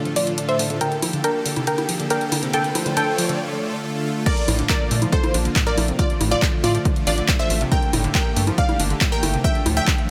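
Bathed in a moderate recital-hall reverb, this euphoric, emotional uplifting trance excerpt builds with a lush, detuned unison pluck melody trailing dub echo over a full-bodied supersaw pad, round chorused analog-pluck arpeggios under a filter sweep, a background riser and an overdriven analog drum machine of congas, handclaps, hi-hat and crash. It then breaks at 3.4 seconds before dropping at 4.3 seconds into a punchy overdriven kick and a bright, phased plucky unison lead on a second line, with a tight, driving sequencer bass arriving just after. The bass, pad, plucks and lead all pump from sidechain.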